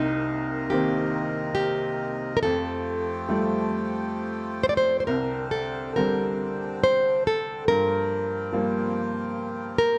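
A Celtic slow air in a rubato three-four, longing and mournful, in which an up-front fingerpicked nylon-string guitar carries the melody over a clear, woody, boxy upright piano and the reedy, nasal, breathing chords of a hand-pumped harmonium, all captured in close, detailed sound with light reverb in this short passage cut from a longer piece.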